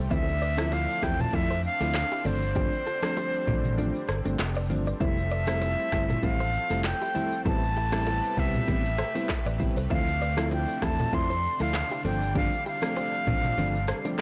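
Afrobeats at 98 BPM with a hypnotic, mellow sway, cut from a longer piece, where an airy, reedy flute with vibrato and digital delay carries the melody up front over a growly fingered electric bass, round chorused electric-piano-like synth keys, a clean direct-recorded electric guitar riff with delay in the background, a lush detuned pad, very quiet dry congas and bongos, and an electronic afro-pop kit with deep kick, crisp hats, handclaps, rim clicks, shaker, toms and a softly clipped snare, its kick dropping out at 3.8 and 13.6 seconds, all through a blown-out, overdriven recording over chords moving from Dm7 and G7sus4 to Fmaj7 and Am9.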